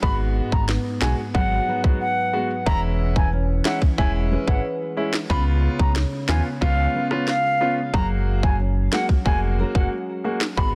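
A baroque flute with a pure wooden tone and expressive vibrato carries the tape-echoed melody over a sunny, bouncy 91 BPM dancehall groove in F# major, backed by a clear, polished baby grand piano with sidechain pumping, thumb-plucked nylon-string guitar arpeggios, a deep, sustained sub bass with octave, and a tight electronic island pop kit of kick, rim click and sharp snare, all in a dense, heavily limited modern master cut from a longer piece.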